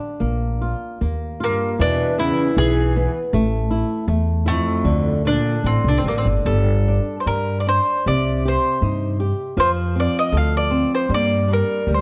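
Passionate and longing, this fado-style ballad moves in a rubato 2/4 at about 73-82 BPM, opening in D minor and shifting to G minor at 6.4 s. Fingerpicked flamenco guitar and a woody, thumpy pizzicato upright bass on gut strings sit up front from the start. At 1.4 s they are joined by a bright, picked, double-strung bowl-back mandolin carrying the melody and a smooth bowed cello with vibrato on a second line, which drops out at 6.2 s and returns near the close, all in a dark production with light reverb, cut from a longer piece.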